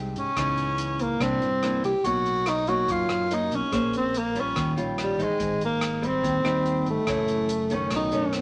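This short bossa nova excerpt opens with a small, fingerpicked nylon-string guitar and a bright, growly fingered electric bass, with a tenor saxophone and a big-band drum kit joining at 0.2 seconds. The mood is sophisticated and relaxed, moving at 143 BPM in a straight 4/4. Close-miked and up front, the tenor sax carries the melody as a jazz-style solo with a soft attack and light vibrato. The drum kit sounds airy and polished in a hall-like space, with hi-hat, rim clicks and a punchy kick sitting low beneath the amped bass. The harmony drifts through rich jazz chords such as Dbm9, Bmaj7, Eb9 and Abmaj7 before arriving on B9 near the close, all set in a moderate studio reverb with a gently rounded top end.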